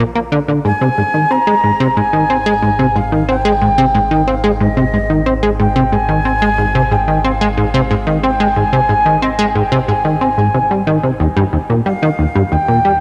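A wet plate reverb with a long 3.1-second tail bathes this short cut from a longer piece of hypnotic, mysterious, sequencer-driven space music in a straight four-beat pulse. Up front, a punchy, funky analog bass carries the riff with a fast-attack filter pluck that decays, its sawtooth and pulse-wave tone evolving under a delay. Beneath it, a nasal analog drone fades in from the start, its slow attack and long release shaped by pulse-width modulation, a moving notch and chorus. At 0.7 seconds a mellow silver concert flute enters with the melody, its airy, straight tone marked by a crisp chiff, sitting distant and slightly unsteady in the space with its own delay. The harmony moves from Bb to Ab and settles on Eb at 11.2 seconds.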